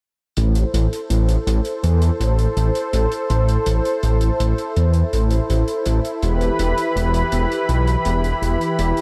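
This short cut from a longer synthwave piece opens at 0.4 seconds with a detuned saw bass, a warm analog pad and a hi-hat all entering together, moving at a straight 82 BPM in 4/4 and in A minor. The mood is moody and nostalgic. The bass sits up front, thick and saturated, with stacked unison sawtooth, square and sine layers, a fast attack and chorus, while a filter sweep runs across it for the whole passage. The pad holds sustained chords from E3 to B5, smooth and detuned with a soft attack, a long release and its own chorus. Far back in the mix, the hi-hat has a dark, rolled-off acoustic tone from a small room. The chords move from Am to Em at 6.2 seconds, and a huge ambient reverb soaks the whole dreamy mix.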